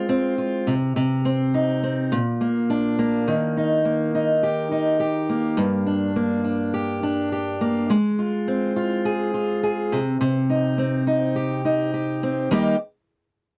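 Sunny and heartfelt, this short pop excerpt features a lone fingerpicked steel-string acoustic guitar, up front and warm in a dry, close 1970s-style studio sound, moving through chord changes before settling on Eb at 12.5 seconds.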